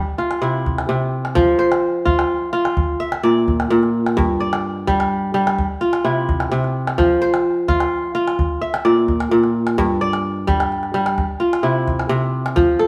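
A fingerpicked kora sits up front, spinning ringing, crisp arpeggios that range from G2 up to E5 from 0.2 s onward. This is West African traditional string music with a flowing, hypnotic mood, moving in 12/8 at 86 BPM with a straight feel. Beneath it, a small calabash supplies percussion with a vintage, band-limited tone that sits lower in the balance than the kora. The harmony cycles steadily through C, F5, Bb and G5, repeating the pattern across the passage. Both players sound as if they are performing live together in one room, wrapped in a wet stone-room reverb. The recording is a short section cut from a longer piece, lasting just under 13 seconds.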